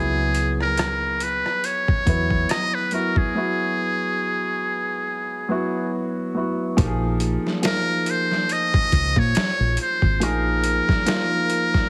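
R&B with a neo-soul lean, this smooth, introspective cut from a longer piece moves at an unhurried 70 BPM in Bb minor, with a gentle swing on the sixteenths. A trumpet with a metal mute carries the melody up front, its brilliant, buzzy, thin tone rounded by a smooth top, light vibrato and scooped notes in a jazz-style solo voice. Beneath it, an upright piano gives woody accompaniment with long sustain, while a deep, dark fingered electric bass adds round, punchy, foam-muted lows until 10.8 seconds. A sampler-style boom bap kit enters at 0.3 seconds, pitched down and gritty, with a thumpy kick, medium-tuned snare, rim click and hi-hat that sound re-recorded in a small room. The harmony rests on Dbm7, passes through a break, and shifts to Bb7(no3) at 6.8 seconds, all framed by light digital reverb and a heavily squeezed, radio-like sound.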